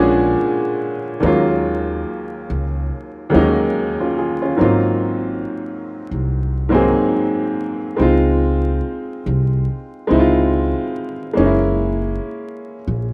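An easy 71 BPM groove in 4/4 with a light swing on the 16ths carries this hazy, nostalgic lo-fi hip hop excerpt, where a smooth, vintage-toned upright piano with short sustain, softened by a low-pass filter, moves through jazzy chords from Bb7alt and Ebm11 to Ab13, Dbmaj7 and Gb7 over a growly, woody pizzicato upright bass, both sitting up front in a small, lightly reverberant room with the rough feel of a home demo and a bed of vinyl crackle.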